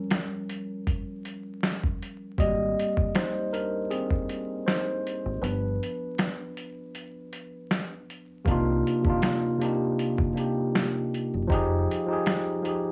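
Vinyl crackle and a small-room ambience wrap this melancholic, reflective lo-fi hip hop excerpt in moderate reverb, giving it a dusty, intimate feel. Up front, a clean tine electric piano heard through its built-in speakers carries the accompaniment and takes a solo through the opening 8.5 seconds, its tone dulled by cassette tape and a low-pass filter. It moves through rootless Eb7, Abmaj9#11 and rootless G7 voicings before settling on Cm11 and Fm9. A sampler-style soul drum kit sits equally forward with a gritty, compressed, tape-warm character, combining finger snaps, hi-hat, a thumpy kick and a medium-tuned snare, all swung lightly on the 16ths and re-recorded in a small room. At 2.4 seconds a dark, round, punchy fingered electric bass enters low in the mix, and a break arrives at 5.4 seconds before the opening section repeats.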